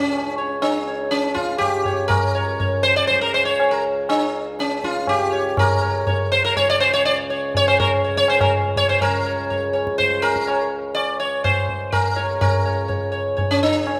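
Serene and devotional, this Hindustani classical excerpt in raga Marwa on C# moves in a straight 7/4 at 122 BPM and gradually speeds up, with a bright, buzzing, up-front sitar carrying the melody over shimmering sympathetic strings, a reedy, breathing pedal harmonium holding a low drone, and high-tuned, ringing tabla joining at 0.1 seconds, all set in a wet, spacious reverb, with the music shifting into a new section at 9.0 seconds.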